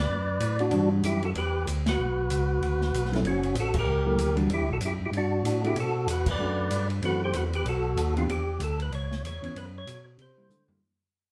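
Soul jazz organ trio in B minor, swinging at 190 BPM with a bluesy, late-night mood, in a short cut from a longer piece. A percussive tonewheel organ carries the melody from the start, its fat, lightly overdriven tone given a third-harmonic click and turning through a slow rotary speaker with plate reverb, while a second tonewheel organ holds down the bass line with overdrive, chorus vibrato and the same slow rotary, both sitting up front. An open acoustic jazz kit enters at 0.4 seconds with dark cymbals, a medium-tuned snare and a boomy kick, and a dark, clean hollow-body electric guitar joins at 0.7 seconds with fingered accompaniment. The band hits accents together over harmony that moves from Em9 through altered dominants such as F#7#9 and B7b13. From 8.3 seconds a new section shifts the chords and the music fades out, closing on a drum fill from 10.5 seconds, all heard from further back in a club room with a wet reverb.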